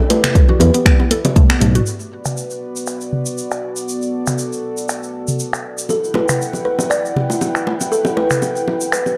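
Driving and hypnotic, this afro house excerpt moves at 119 BPM in B minor with a light 16th-note swing, opening on Em7 with a mellow sawtooth pad pumping under sidechain, a dark, woody kalimba carrying the melody through 12-bit sampler grit and tape echo, and a round FM pluck spinning chorused arpeggios. A deep, tape-warm electronic kick and a smooth, vibrato-tinged synth bass sit up front alongside an afro-pop kit of snaps, muffled hats and toms, with high-tuned congas in the background, low-tuned bongos, and a drum fill leading into Bm7 at 1.9 s, by which point kick, bass, pluck and congas have dropped out, and a grainy egg shaker enters. The kalimba and bongos return at 5.9 s over Em9, all in a dry, gritty small-room sound.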